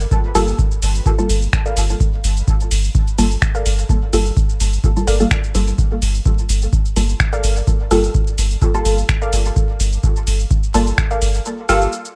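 Cavernous and hypnotic, this dub techno excerpt rests on a round, soft sub bass pumping against a deep electronic kick and a booming analog drum machine of finger snaps, metallic hi-hats and shaker, while a muted, detuned chord stab on a Gm9 filter-sweeps through chorus, phaser and dub echo, a warbling, lo-fi pluck drifts darkly above in echo, and light reverb and vinyl crackle frame the groove until the kick drops out at 11.5 seconds.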